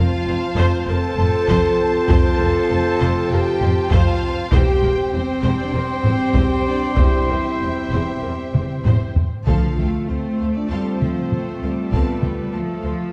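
Epic orchestral film score with a relentless, heroic mood, built on a lush bowed violin melody with vibrato, a soft-attack second violin line, clear viola accompaniment and sustained chords from distant woodwinds, mellow trombones and close-miked French horns, while mellow, vintage-toned trumpet stabs punctuate until 9.1 seconds. Bright cellos and a rich, focused double bass section anchor the bass, and a hard-struck taiko ensemble drives the rhythm from 1.2 seconds, with a drum fill leading into a brief timpani entry at 9.5 seconds as the harmony shifts. The dark production sits in a wet concert hall reverb, and the piece is cut from a longer work.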